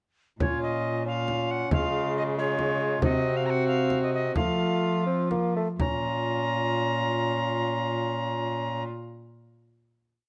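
An airy alto recorder with a wooden chiff, tongued notes and vibrato carries the melody of this rustic, solemn renaissance-style consort dance in Bb minor, moving in a straight 6/8 at 80-92 BPM before slowing from 2.4 to 5.8 seconds into a held final chord. A bowed viola with gut-string tone and a soft-attacked bassoon that answers at phrase ends fill in sustained chords in the rhythm of the tune, over the rich, nasal sustained bass of a cello. A deep frame drum struck with hard hands plays a dance rhythm until 6.0 seconds, and the consort is heard through close, detailed microphones with light reverb.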